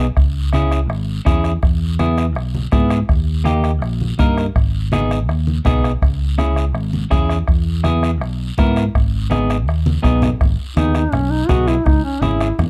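A mellow, smooth-topped duduk takes an up-front folk-style solo at 10.8 s, arriving just after a drum fill at 9.9 s in this passionate, danceable cumbia excerpt cut from a longer piece. Beneath it, a dark, clean, scooped semi-hollow electric guitar plays fingered accompaniment while a round, punchy fingered electric bass sits up front. A close, soft-beater bombo, a raspy, dry guiro and low-tuned, thick-skinned congas in the background drive the rhythm, all within a dark production with light reverb.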